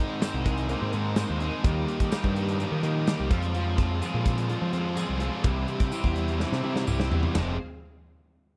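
A straight 4/4 pulse at 126 BPM drives this restless, cool indie rock excerpt in F minor, where a big rock drum kit with a punchy kick and bright cymbals plays up front beside a growling, overdriven picked bass, a dark, compressed overdriven guitar riff, a bright high-gain distorted guitar riff with subtle chorus, a jingly tambourine in the background and very quiet warbling vintage string-machine violas holding sustained chords, all moving through Abadd9, Ebadd9, Fm and C in a dry, close 1970s-style studio sound before a drum fill at 6.4 seconds leads back to Fm at 7.3 seconds.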